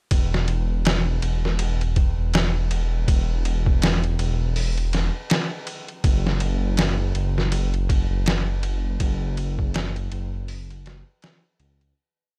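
Dark and melancholic, this short trip hop piece sets a swung groove from a muffled, pitched-down sampler-style drum kit, playing a looped breakbeat with edits, thumpy kick, medium-tuned snare, hi-hat and ride, against a deep, rumbling detuned saw bass carrying a dub-style line, both up front in a dry mix before fading out from 8.0 seconds to the end at 12.0 seconds.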